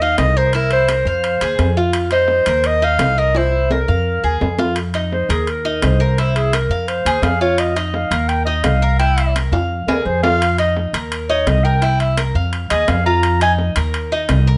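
Sultry and warm, this short latin passage in the Cuban son and guajira style moves at a brisk 170 BPM in straight 4/4, centered in F minor. A classical-style clarinet carries the melody up front, its tone lightly colored by a slapback echo, and it takes a solo from 4.8 seconds as the piece shifts into its second section. Underneath, the Cuban tres picks out arpeggios with a metallic, double-string shimmer, some strings doubled at the octave. A woody, thumpy upright bass with gut strings sits prominently in the low register, and ringing metal-shell timbales supply compressed, saturated percussion, adding drum fills around 3.4 and 9.5 seconds. The close, detailed recording carries a light reverb, and the harmony circles through Eb5, C7 and Fm with Ebsus2 and Ab6/9 colors.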